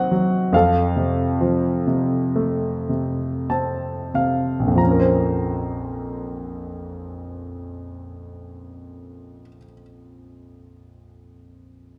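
A clear, up-front concert grand piano with a deep, natural bass plays alone through this cool, brooding classical fragment cut from a longer piece, its lyrical rubato line in 4/4 slowing over the opening 4.8 seconds with a fill from 2.9 seconds before settling on a Bbmadd9 chord, all carried by a moderate recital hall reverb.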